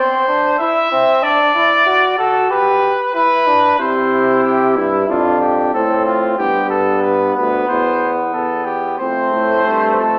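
Lively and joyful, this short cut from a longer classical canzona for brass ensemble moves at a steady 93 BPM in 4/4 and C major, with a warm trumpet carrying the melody with vibrato while a mellow flugelhorn weaves a second line beneath it. A clear bass trombone with light vibrato enters at 3.8 seconds to anchor the harmony, and a brilliant trombone joins at 9.0 seconds as the music turns toward an F chord. The trumpet and flugelhorn sound somewhat distant inside the reverberant space of a church or recital hall, and the recording has a small-speaker quality.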